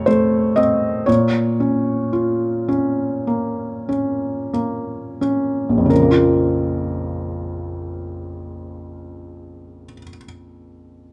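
Rubato in 4/4, this melancholic, wistful fragment of lyrical classical solo piano, cut from a longer piece, features a felt-muted upright heard up front through close, detailed microphones, its soft, mellow, intimate tone and audible action noise settling into a moderate recital-hall reverb as the playing moves from F to B-flat minor and slows over the first 5.9 seconds before a new section begins.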